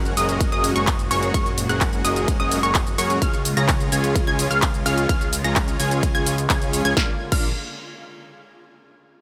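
A straight, steady pulse drives this festival progressive house drop, with a punchy, layered electronic kick sitting up front from 0.4 seconds and a big-room dance kit of snare, handclaps, hi-hat, shaker, ride and crash cymbals filling out the groove. The mood is emotional and anthemic, carried by a huge, thick riff on a dense compressed supersaw, detuned with a sub octave and a touch of vibrato, which rides tape echo and sidechain pumping. Above it, a lush unison pluck spins high, decaying arpeggios, also pumping and echoing. A fat, nasal, saturated analog bass anchors the low end with an evolving tone, while a full-bodied supersaw pad holds slow-attack chords in the background through a phaser until about 7.2 seconds. The harmony moves from Gbadd9 to Db and lands on Bb as the drop gives way to a new section at 7.0 seconds, all set in light reverb and digital ambience in this short cut from a longer piece.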